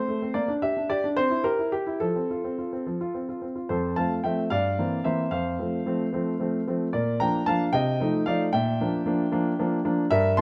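The rhythm moves in 6/8, counted at 74 dotted-quarter beats per minute and shaped with a free, rubato pulse. This short passage, cut from a longer classical-period piano sonatina in F major, carries a restless, serious mood. A solo grand piano spans F2 to C6, its smooth, vintage tone placed up front. The opening phrase passes from G minor over B-flat through C to F. A second passage begins at 3.7 seconds, turning through C7 over G, F, B-flat and F7 over C before reaching B-flat at 8.5 seconds. Close, detailed microphones capture the instrument within a moderate recital hall reverb, and the piano is tuned to A4 = 438 Hz.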